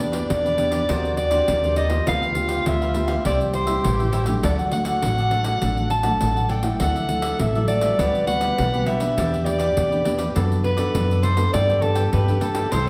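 A mellow soprano saxophone carries the melody up front with light vibrato, while a breathy tenor saxophone adds a second line full of subtone and scooped notes. Underneath, a woody, thumpy upright bass sits forward, a thumb-plucked nylon-string guitar and a crisp, picked cavaquinho fill in the accompaniment, and a jingly pandeiro supplies the percussion in this joyful, sunny blend of samba and choro. Cut from a longer piece, the recording is bathed in a wet, large studio reverb that places the listener further back in the room.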